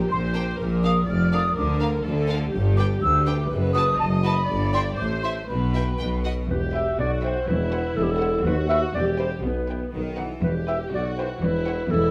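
Mischievous and sneaky, this cinematic passage cut from a longer piece moves in a straight 2/4 with an orchestral blend of strings and winds. A clear, intense violin section carries the melody with vibrato, while a second violin line sits in the background. A rich, distant viola section fills out the accompaniment, and the low end is built from a bright, close cello section, a clear double bass section and a soft-attacked, roomy tuba. A pure, metallic concert flute adds an expressive second line until 6.2 seconds, and from 6.5 seconds a smooth, up-front clarinet takes over that role. The whole ensemble sits in a wet stone room reverb that lends the harmony an echoing, cinematic air.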